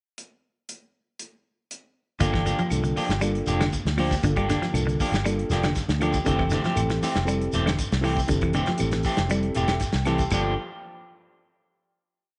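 A soul drum kit opens this short afrobeat piece alone with a pickup bar of crash, hi-hat, snare and tight kick, its cymbals dark and its top rolled off in a small room. At 2.2 seconds the band arrives, with the claves following a moment later, in a hypnotic, intense groove at 118 BPM in G dorian, moving between Gm7 and Fmaj9. A round, foam-muted fingered bass plays a syncopated riff while a clean picked guitar repeats a low ostinato, and an up-front guitar at the edge of break-up strums upper chord shapes through spring reverb. A reedy electric piano heard through its built-in speakers adds syncopated rootless chord stabs, with a fill from 9.3 seconds. Far back in a large room, a grainy shekere and woody claves tapping a five-stroke time line sit in the background, and the piece comes to rest on a final Gm7 at 10.3 seconds in a moderate echo chamber reverb.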